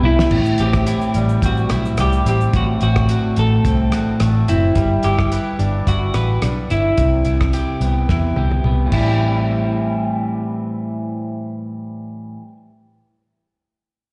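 A brief drum fill opens this lonely, mellow excerpt of swung indie bedroom pop at 108 BPM in A dorian, where a muffled, cloth-damped kit with a fat snare and gritty, rolled-off top rides under a dark, foam-muted vintage bass and an up-front, twangy guitar at the edge of break-up with subtle chorus and warbly pitch drift, while a clean semi-hollow guitar carries the melody through slapback echo and analog delay over Am7, F#dim, G6 and Cmaj7 chords, the drums falling away after a second fill from 8.1 seconds so the bass and guitars close out the excerpt in a live, recital-hall reverb.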